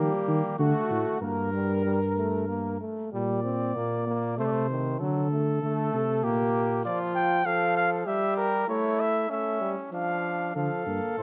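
A warm cornet with light vibrato carries the melody in this stately, joyful classical canzona for brass ensemble in G minor at 96 BPM in 3/4, joined by a dark trumpet on a second line that pauses between 2.8 and 6.9 seconds, a clear, present trombone accompaniment, and a mellow tuba bass that drops out at 6.9 seconds before returning at 10.6 seconds, all captured by close, detailed microphones in a concert hall with moderate reverb.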